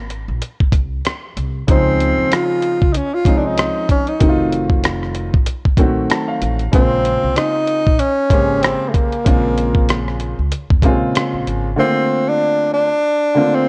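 A breathy tenor saxophone leads this smoky, cool jazz-hop excerpt, its mellow, whispered subtone carrying a slapback echo over a swung 95 BPM groove in Bb minor. Gritty, compressed sampler-style drums with a thumpy kick, hi-hat and rim clicks sit up front beside a growly, woody pizzicato upright bass, while an upright piano with a natural tone enters at 1.7 seconds and adds a fill at 5.8 seconds over chords moving from Dbmaj9 through F7b9 to Bbm7. Light small-room reverb and a worn, warbling cassette-tape drift colour the recording, and the bass and drums drop away near 11.7 seconds as piano and saxophone settle on Bbmaj9.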